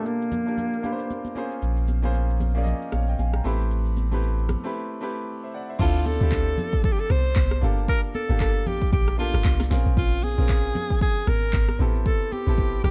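A dark, dry production carries this late-night, hypnotic amapiano cut in D minor at 115 BPM with a swung 16th feel, where a bright grand piano comps throughout, an overdriven deep house kit with a punchy snare and congas ride beneath, a round sine sub bass holds from 1.6 to 4.6 seconds before a brief break, and a percussive log drum bass lands with the drop at 5.8 seconds as a breathy, close-miked alto saxophone with vibrato and delay returns to carry the melody over Dm7, Gm7, Bbm7 and Am7 chords.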